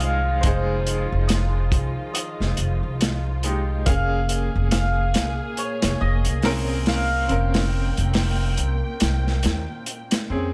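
A dark, cinematic trip hop excerpt opens with a shimmering, hammered cimbalom melody trailing dub echo over a brilliant upright piano treated with tremolo and tape echo, veiled con sordino strings, a woody, thumpy pizzicato upright bass and a gritty, saturated breakbeat kit with a swung feel, all in a small room as the chords move from Fm7 to Bbm7/F until the kick drops out at 9.0 seconds.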